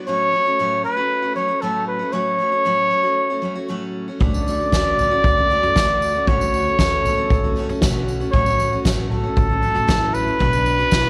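Indie folk with a yearning, wistful mood, this excerpt opens with a full-bodied picked steel-string acoustic guitar under a mellow, punchy trumpet melody that sits up front with a vintage, classical character. At 4.2 seconds the arrangement builds as a dark French horn with light vibrato adds a distant second line, a woody pizzicato upright bass settles in the background, and a soft-mallet drum kit brings a fat snare and boomy kick, joined by a faint, jingly tambourine. The chords move from F#m/A to Dmaj7 and back before reaching Bm, all in light reverb and small room ambience.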